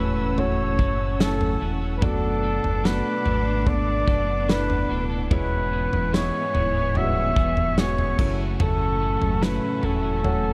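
Melancholic and emotional, this slow pop ballad excerpt at 73 BPM in F# minor sets a breathy, vintage-toned flugelhorn melody with vibrato and scooped notes up front over a rich, sul tasto cello section second line with delay, a background baby grand piano, clean picked twelve-string electric guitar arpeggios, a veiled con sordino string section holding distant sustained chords, a deep sine sub bass with octave, and a natural country drum kit with punchy kick, medium-tuned snare, toms and crash that enters at 0.4 s, all in light small-room reverb as the chords move from F#m7 through D6/F# and E6 back to F#m7.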